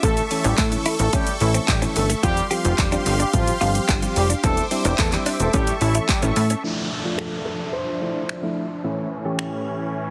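Dance-pop at 109 BPM in D minor, driving and bittersweet, this excerpt opens on a drop where a mellow horn section carries the melody over soft, round electric-piano-like synth keys, huge detuned supersaw chords, a clean direct-recorded electric guitar riff in lush chorus, a punchy, funky plucky analog bass and an up-front pop drum kit with snaps, claps, bright hats, shaker and a jingly tambourine, with the horns, keys, supersaws and bass pumping under sidechain, before the horns, guitar and bass drop out at about 6.6 seconds for an electronic downlifter and a brief, polished baby grand piano line at 7.2 seconds, the whole mix given light reverb and a heavily compressed radio sound.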